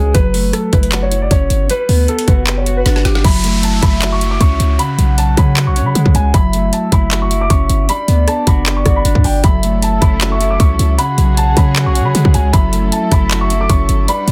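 A dense, heavily limited modern master with digital ambience frames this dark, menacing trap excerpt, cut from a longer piece and set in a half-time feel. A dark, mellow baby grand piano carries the melody with long sustain, filtered through a low-pass, while a clean, fingered electric guitar, also low-passed, supplies accompaniment underneath. Up front, a deep, boomy 808-style bass with a sine body, noise layer and fast attack decays alongside an electronic trap kit of hard-clipped kick, woody snare, metallic hi-hats, handclaps, rim clicks and crash cymbal, with a drum fill ending at 3.2 seconds. An electronic swell and downlifter pass through from 2.1 seconds, and at 3.2 seconds a soft, round, octave-layered synth lead enters as a second line, its detuned triangle and sub-octave tone treated with chorus, phaser and digital delay. From 9.4 seconds a distant, lush symphonic string section adds bowed, sustained chords with vibrato in the background as the harmony circles between F#m7, Gmaj7 and C#sus4.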